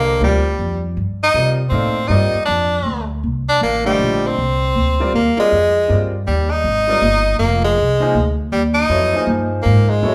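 An edgy tenor saxophone sits up front and carries the melody, its forceful, punchy tone marked by vibrato and scooped notes in a soloing jazz style. This is modal jazz in 3/4 at 159 BPM, swung on the eighths, with a hypnotic, intense mood in a short passage cut from a longer piece. A brilliant, natural-sounding grand piano supplies the accompaniment, while a woody, thumpy upright bass, plucked on gut strings, holds down the low end close to the listener. The harmony rests on Cm11 in C dorian, then shifts to Fm9 and F dorian at 5.5 seconds for the second section. The trio plays live together in one room, and a large studio reverb gives the sound a wet, spacious glow.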